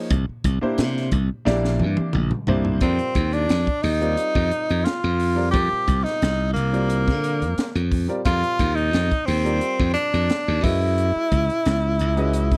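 Electric jazz fusion at 88 BPM in F dorian, funky and intense, opens with a clear concert grand piano accompanying a glassy, growly slap bass sitting up front and a crisp acoustic drum kit with a punchy kick and high-tuned snare, whose drum fill from 1.5 to 2.8 seconds sets up the next section. At 2.8 seconds a bright tenor saxophone enters up front as the soloist, playing with vibrato and a soft attack in jazz style, its line carried on a slapback echo. The harmony moves from C9 to F9sus4 and lifts to Gb9sus4 at 10.6 seconds, with little reverb keeping the sound close and dry in this fragment of a longer piece.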